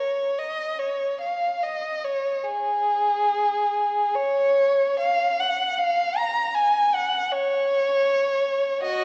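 A wet concert hall reverb with a long tail surrounds this brief 9-second passage, heard from further back in the room, while the bowed solo violin stays up front. In a lyrical, serene classical vein, a single unaccompanied player shapes a free, expressive line in 3/4 with rubato, moving between Gb4 and A#5. The violin's warm tone carries vibrato, gliding portamento and a smooth top.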